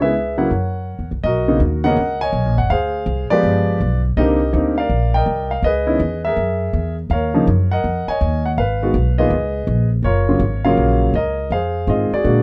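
A concert grand piano carries the melody up front with a warm, deep-bottomed tone in this relaxed, sophisticated swing jazz excerpt at 163 BPM in 4/4. A woody, thumpy pizzicato upright bass with steel strings sits close alongside it for the full 12.4 seconds. Light reverb and a dark production frame the two as the harmony moves through rich colors such as Bmaj9, G7b9, Ebm11 and Gbmaj7.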